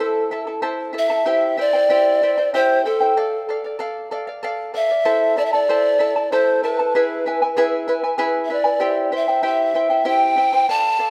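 A breathy, hollow pan flute carries the melody between A4 and A5 in this wistful, melancholic Andean folk passage at 96 BPM in 3/4, its wooden tone softened by a gentle attack and vibrato. A fingerpicked charango shimmers beneath it on double strings, some doubled at the octave, moving through Am, C, Dm, Am, E and C across this 11.1-second fragment. Both instruments sit up front in a moderate stage reverb, captured with close, detailed microphones.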